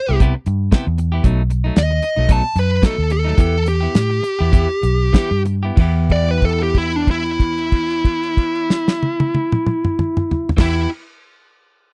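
A dark, overdriven lead guitar solos up front over Cmaj7, B7 and Em, slowing down from 1.2 seconds before settling into a held note from 5.8 to 10.6 seconds, while clean, compressed rhythm guitar stabs with harmonic tremolo, a round, foam-muted fingered bass and a tight, damped 70s drum kit with dark cymbals carry this mournful, brooding straight-eighth soul blues in E minor at 92-116 BPM, captured in a dry, close 1970s-style studio sound.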